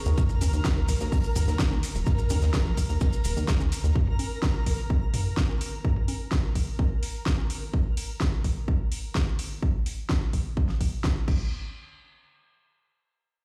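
Bittersweet and emotional, this progressive house fragment at 127 BPM in a straight 4/4 opens on an Eb5 chord, with a twinkling, sparkling granular texture of FM shimmer, pumping and reverb-soaked, floating over a punchy, funky analog bass that is plucky, wave-folded and mellow. The bass stops at 3.9 s along with the grainy maracas, just after a very quiet, dry, airy funk kit with bright cymbals and a high-tuned snare drops out at 3.8 s. The up-front electronic kick, tape-warm and re-recorded in a small room, carries on to 11.4 s alongside an overdriven deep house kit with a fat snare and metallic hats, while analog electronic toms and congas sit in the background with overdrive and pumping until 7.5 s, shortly before the texture ends at 7.7 s. The whole fragment sounds as if played on a big sound system in a bare room, with large studio reverb.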